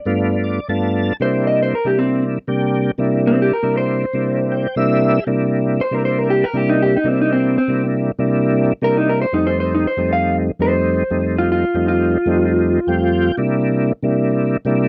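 Blues with a gritty, soulful mood and a straight feel, heard in a short cut from a longer piece. An electric guitar through a small old amp carries the melody up front, its tone dark, slightly broken-up and lo-fi, and it plays a clean solo from 1.2 seconds onward. A smooth tonewheel organ with chorus vibrato and a slow rotary speaker supports it with short fills at 0.2, 4.3 and 12.6 seconds, moving through ninth chords in a dry, close 1970s-style studio sound with light reverb.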